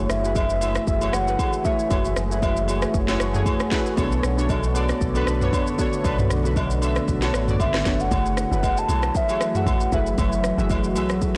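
Amapiano of a soulful, deep mood, this overdriven, blown-out fragment sets a hollow, woody clarinet-like synth lead with vibrato over analog keys with chorus, a moody ambient pad pumping in the background, a full sine sub bass, an up-front electronic drum kit with a deep kick and sharp snare, and distant agogo bells and woodblock, until a round, percussive log drum bass takes over the low end at 8.1 seconds.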